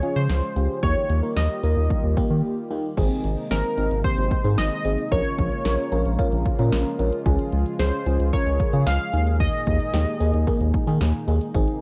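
Wistful yet bright, this synth-pop excerpt sets a funky sawtooth polysynth melody with a filter sweep over a lush, dreamy FM electric piano layered with a soft pad and colored by phaser, a smooth, detuned analog pad in the background, a deep, round bass up front, and a punchy analog drum machine of crash, hi-hat, kick and snare, pausing for a short break at 2.4 seconds before a new section begins at 3.0 seconds, with light reverb and the muffled sound of a home cassette recording that holds nothing above 7.7 kHz.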